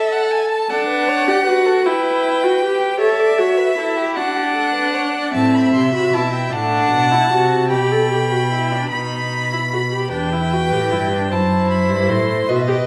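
Two bowed violins open this joyful, elegant baroque-style string quartet fugue fragment in 6/8, the focused, vibrato-laden lead singing above a soft-attacked, expressive second line with portamento; a rich viola accompaniment joins at 0.7 s and a smooth, even cello bass at 5.3 s, the quartet set in a reverberant recital hall.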